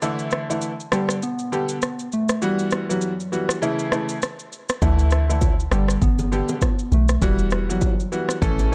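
A bright, worn grand piano and an up-front electronic afro-pop kit with a deep kick, rim click and shaker open this breezy, romantic afrobeats excerpt at 100 BPM, swinging on the 16ths over a Dsus2, G, Emadd9, A progression. At 0.9 seconds a gentle, warbling synth lead with a vintage, keys-like FM tone and chorus carries the melody. At 4.8 seconds a round, percussive log drum bass arrives up front with very quiet acoustic congas and bongos, all set in a dark digital ambience.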